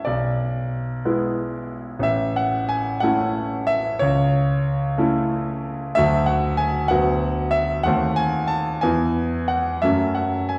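A romantic character piece for solo piano, this brief excerpt from a longer work carries a brooding, stormy mood despite its A major key. It moves at 61 beats per minute in 6/8, with free, elastic rubato shaping the phrasing. A clear concert grand piano plays alone throughout, sounding polished and present, with a deep bass and a short sustain as it ranges from A1 up to A5. The harmony opens on E7 over B before settling onto A, then passes through A over C sharp, D and B minor over D, tightening on a diminished chord around 7.9 seconds before reaching E and closing on F sharp minor at 9.8 seconds. The instrument, tuned slightly high at A4 = 443 Hz, is heard from further back in a recital hall whose lingering reverb of about 1.8 seconds gives the fragment a spacious, resonant setting.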